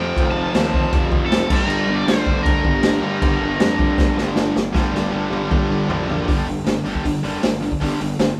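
Punk rock in G minor at 157 BPM, this angry, aggressive excerpt from a longer piece has a band playing live in one room, with a bright cranked stack guitar carrying the melody from A4 to A5 until 4.3 s over a background wall of riffing distorted, fuzz and tight distorted guitars, a growly fuzz picked electric bass, and an up-front raw garage drum kit with a boomy kick, dark cymbals and a gritty, pumping small-room sound that throws in fills from 4.0 s to 6.3 s before the chords move from F and Gm to a closing G5 at 6.3 s.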